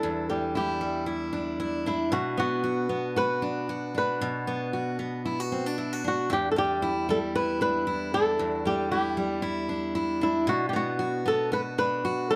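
A tender, reflective pop excerpt in E minor, moving at 115 BPM in 4/4 with a light swing on the sixteenths. A flamenco guitar carries the melody throughout, its dark, fingerpicked tone sitting up front and bathed in plate reverb, staying between E4 and B4. Beneath it, a picked steel-string acoustic guitar supplies the accompaniment from E2 to F#4, its full-bodied dreadnought sound also placed close, and finger squeaks surface on both instruments. The harmony alternates between Em7 and Bm, shifting to Bm at 2.1 seconds and returning to Em7 at 6.3 seconds. The pair play together for the full 12.4 seconds in a moderate studio room with a short ambience.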